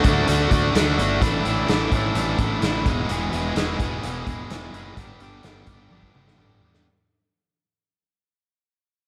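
This brief, fading cut from a longer classic rock piece opens at once with a double-tracked, picked electric guitar riff up front, a growly fuzz-fingered bass and a raw garage drum kit with a punchy kick and a rolled-off top. At 128 BPM in a straight 4/4, the confident, swaggering riff moves through D, Asus4, E and G in a small room with light reverb. A drum fill carries the cut from 5.9 seconds to its end.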